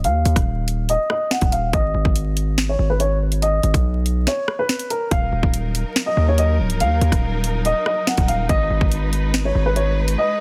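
Up front, a distorted 808-style bass growls with a heavy, saturated weight and a noise layer, anchoring this menacing, tense drill cut at 142 BPM in a half-time feel, while a dark, boxy baby grand piano carries the melody through a low-pass filter sweep over the first 5.1 seconds. A drill drum kit with a hard-clipped kick, sharp snare and bright hats drives alongside, dropping into a brief break before a distant, woody string section enters at 5.1 seconds with lush bowed chords over the shift from A-flat minor to E-flat minor. The drums cut out at 10.2 seconds, and the dense, heavily limited master sits in a small room with vinyl crackle.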